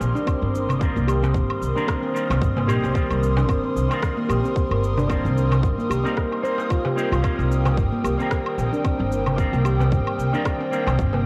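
A woody, thumpy upright bass sits up front in this mystical, warm organic downtempo piece at 112 BPM in C minor, holding on Cm7 while a dark, ringing handpan plays meditative arpeggios with delay, a bright, twangy electric guitar with an envelope filter adds pumping accompaniment, an airy, breathy pad sustains chorused chords, a crisp metal-shell darbuka plays in the background over layered electronic cabasa, woodblock and rim click, and a tight electronic kick drum enters at 0.3 s, all in a small room with a worn, warbling cassette-tape pitch drift.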